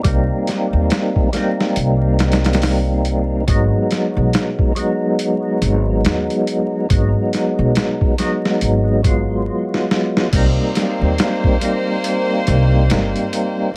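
A slow 70 BPM trip hop groove in 4/4 swings its sixteenths, carried by a compressed, pitched-down boom bap sampler-style kit with a thumpy kick, a medium-tuned snare, hi-hat and crash, gritty and re-recorded in a small room so it sits up front. A pizzicato upright bass with a woody steel-string tone holds the low end beside it, while a fat, clean percussive tonewheel organ with third harmonic percussion and key click plays accompaniment through chorus vibrato, a slow rotary speaker, tremolo, tape echo and vintage 12-bit sampler grit, with a filter sweep running over it for the opening stretch. The harmony moves from Cm7 to Abm7 and back, tuned slightly flat to A4 = 435 Hz, and a layer of vinyl crackle hangs over the whole mix, giving it a hypnotic, melancholic haze. A break arrives at 9.5 seconds, with a drum fill from 9.7 seconds, and at 10.3 seconds a rich chamber violin section enters with sustained, bowed chords of reedy gut-string tone, light vibrato and a smooth top, played in period style. 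This short section is cut from a longer piece.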